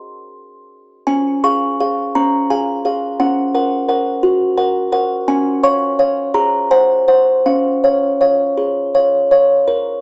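Heard as a home cassette recording through a small speaker, with light studio reverb, this ten-second fragment of a classical lullaby puts a large music box up front, its delicate, tinkling plucked tones slightly out of tune. The tender, innocent melody moves in a rubato 6/8 at roughly 53-58 BPM in dotted quarters, spanning Db4 to Db6 in Db major. The harmony rests on Db, passes through Gb/Db and an Ab7, and returns home by 7.5 s.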